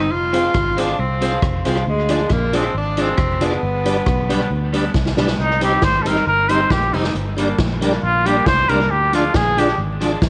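A breathy, whispered trumpet takes the solo at 5.4 s in this mischievous, energetic ska piece, after a roomy tenor saxophone carries the opening melody over a dark, slightly broken-up electric guitar with tape echo, a round fingered electric bass, piping tonewheel organ stabs with overdrive, chorus vibrato and a slow rotary speaker, and a big-band drum kit with a boomy kick whose fill at 4.9 s leads into the trumpet, the mix sitting in plate reverb with vinyl crackle.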